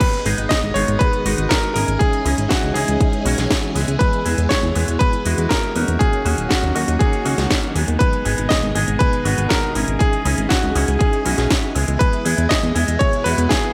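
A punchy, up-front electronic kick drives a straight pulse, layered with a house kit whose cracking snare, metallic hats and crash cymbal carry a gated reverb and a tape-tinged, small-room character. This bittersweet, danceable italo disco fragment, cut from a longer piece, opens with a clear electric grand piano singing the melody over a clangy low register and short sustain, its lines trailed by delay. A glossy, dark synth bass joins at 0.3 seconds, blending pulse-width modulation and sawtooth tones with a plucky filter, chorus and tube saturation. From the same moment a clean, scooped electric guitar adds compressed, picked stabs shaped by an envelope filter. Behind them all, a swirling, warbling string machine holds soft-attack chords through ensemble chorus and phaser as the harmony moves from G#m to E and D#m7, then returns to G#m and E, with light reverb around the mix.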